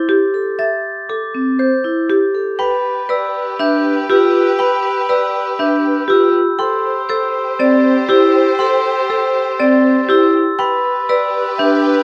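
Minimalist classical pattern music, meditative yet urgent, in which hard-mallet vibraphone arpeggios and a woody, percussive marimba melody begin together at the outset, a bell-like glockenspiel adds close, dry arpeggios above them, and from 2.6 seconds an airy alto flute line sits distant in the background while a rich chamber violin section holds bowed sustained chords, set in light reverb with a dark production, in an excerpt cut from a longer piece.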